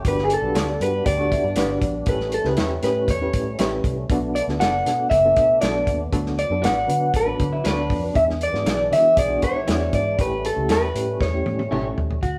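A straight 4/4 groove at 118 BPM drives this uplifting, danceable 1960s-style soul excerpt, where a slightly broken-up, up-front guitar melody rides over guitar riffs and stabs, a round, foam-muted fingered bass, a muffled, dry drum kit with a tight kick that closes on a fill at 11.2 seconds, a reedy electric piano with fast tremolo, and a lightly overdriven tonewheel organ in the background holding sustained chords through chorus vibrato and a slow rotary speaker, all played live in one room with a wet studio reverb.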